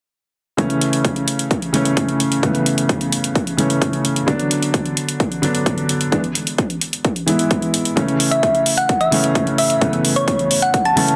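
A felt-muted upright piano, electronic hi-hat and electronic kick drum begin together at 0.6 s in this euphoric, uplifting festival progressive house excerpt, cut from a longer piece. The piano sits up front, soft and intimate with audible action noise, pumping under sidechain and trailed by delay as its chords move from A through Bm and E back to A. Beneath it, a punchy, layered kick, re-recorded in a small room and high-pass filtered, holds a straight 4/4 pulse, while metallic hats sit forward in the mix. At 8.3 s a thumb-piano-like synth pluck carries the melody, round and tine-like with a dark FM tone, a noise layer and a fast attack that decays, coloured by chorus, phaser and dub echo. A moderate scoring stage reverb lends space, and the master is dense and heavily limited.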